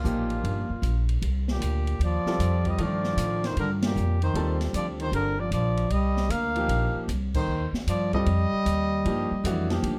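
Modal jazz in C dorian swings at 153 BPM with an intense yet cool mood, holding on a Cm11 chord in this 10-second cut from a longer piece. A mellow, distant trumpet carries the melody with a soft attack and plate reverb, while a buzzy, metal-muted trombone plays a thin, breathy second line beneath it. A brilliant grand piano supplies the accompaniment, a woody, thumpy upright bass sits up front, and an open acoustic drum kit with dark cymbals, a high-tuned snare and a boomy kick joins the full band for accents at 3.8 and 7.3 seconds.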